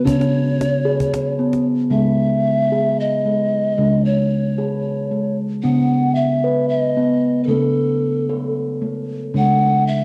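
A straight 7/8 pulse at 226 BPM in eighths carries this meditative, hypnotic world piece in C# minor, cut from a longer work, where a steel tongue drum rings out round, pure arpeggios under rubber mallets while a close-miked bamboo pan flute sings a breathy, hollow melody with vibrato and a soft chiff, both up front with a cassette-tape tint, as a woody, close and dry cajon with faint snares plays only from 0.1 to 1.6 s, the whole mix bathed in a wet spring reverb over a C#m, B/C#, A/C# progression.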